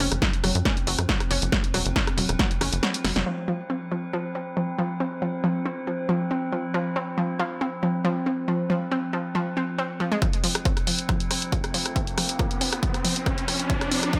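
Driving peak-time techno at 138 BPM in a straight 4/4, this intense, hypnotic passage is cut from a longer piece. A round, detuned analog pluck riff with a bright noise layer and chorus runs throughout, pumping against the sidechain and trailing delay, while a metallic, inharmonic drone sits underneath, its slow attack and long release clouded by chorus, phaser and its own reverb for an eerie shimmer. At the start, a tight, nasal sequencer bass with tube saturation drives hard alongside a punchy, dry analog drum machine of hi-hat, rim click and snare and an up-front electronic kick. The kick drops out briefly, a drum fill lands at 3.0 seconds and a band accent at 3.2 seconds, and then the bass and drums give way to the pluck and drone while a filter sweep moves through the synth line. The drums and kick return at 10.2 seconds for a build-up, joined by an electronic riser from 11.7 seconds, all set in a moderate digital plate ambience.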